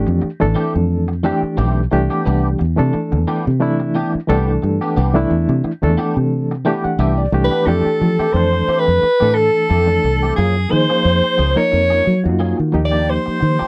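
A barky, reed-toned electric piano with light overdrive and a fast tremolo opens this slick jazz excerpt alongside a round, foam-muted fingered bass that sits up front. A clean, twangy electric guitar joins almost at once with compressed, picked stabs coloured by ensemble chorus, sitting lower in the mix. The tempo is a relaxed 89 BPM in 4/4 with a light swing, and the harmony moves through lush major-ninth chords, from Fmaj9 to Cmaj9. The electric piano plays a fill leading into the second section, where the chords shift through Fmaj9, Gbmaj9 and Ebmaj9. At 7.4 seconds a mellow, punchy soprano saxophone enters with a forceful, soaring lead and light vibrato, and an airy, straight-toned concert flute adds a tongued second line in the same register. The dry, close 1970s-style studio sound carries only light reverb, and the saxophone sounds distant and roomy despite sitting up front.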